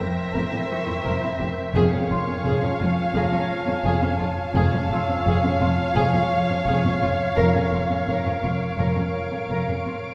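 Heard from further back in a reverberant concert hall, this uneasy, tense suspense film-score fragment, cut from a longer piece, sets a muted chamber violin section up front carrying a veiled melody over a lush symphonic violin second line. Dark-toned cellos play a riff and a bass line alongside a double bass section in the background, while an airy, breathy, wind-like noise layer holds sustained chords. A high, soft-attack violin texture hovers faintly, and a mellow, thumb-plucked concert harp rings from 0.7 to 7.4 s as the harmony shifts over an F in the bass.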